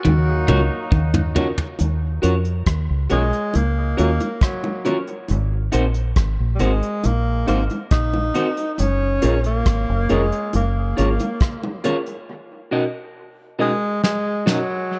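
Smooth and bittersweet, this lovers rock reggae fragment sets an up-front jazz-style alto saxophone with vibrato, scooped notes and tape echo over brushed drums with a fat snare and tight kick, a round, foam-muted dub bass and low-tuned bongos trailing dub echo, while a distant horn section is heard only until 1.3 seconds and a twangy, slightly broken-up guitar riff only until 1.2 seconds, leaving a mellow tine electric piano in the background and very quiet, compressed guitar stabs inside a dark, warm production.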